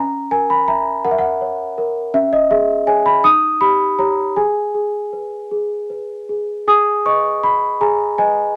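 A worn celesta opens the recording alone, its bell-like tone sweet and delicate as a classical lullaby begins to rock gently in 6/8. The solo instrument sits up front, its soft felt hammers giving the notes a mellow, slightly dark quality, and a slight detuning adds to its aged character. The rubato feel lets the phrases breathe freely, shaping an innocent, dreamy mood as the harmony drifts through a handful of chords. Around 6.7 seconds the music moves into a new section, and the celesta carries on until the clip, cut from a longer piece, ends at 8.6 seconds. Light reverb surrounds the instrument, whose tone stays soft and smooth.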